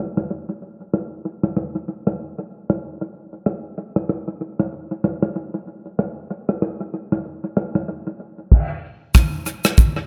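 Afrobeats with a sultry, smooth mood, this cut from a longer piece features a modern studio drum kit entering at 0.2 seconds with crash cymbal, punchy kick drum, rim clicks and shaker riding a swung sixteenth-note feel. The acoustic kit sits up front with an airy, polished studio-room character and analog delay. The echo-heavy mix carries light reverb and a low-pass filter sweep running from 0.0 to 9.1 seconds.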